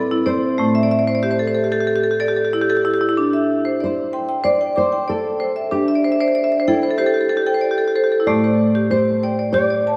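A hypnotic, meditative world piece cut from a longer work opens at a steady 94 BPM in 4/4 with a percussive, boxy hard-mallet marimba up front playing arpeggios and fills around 0.8 and 5.9 seconds, beneath a dark, full-bodied, thumb-plucked nylon-string guitar melody with audible finger squeak, lush chorus and diffuse ambient delay, all moving from Am to D5 and back while a dreamy hall reverb soaks the mix.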